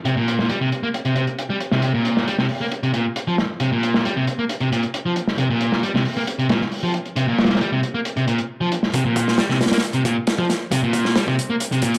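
A bright, compressed electric guitar riff, distorted and run through analog delay, opens this funky, energetic breakbeat excerpt together with a dark, saturated breakbeat kit of punchy kick, medium-tuned snare and hi-hat, both sitting up front. The drums have a rolled-off top and a small-room feel, while a moderate plate reverb and gritty hardware character give the mix its raw edge. From 8.9 seconds the music shifts into a build-up that runs to the end of the cut.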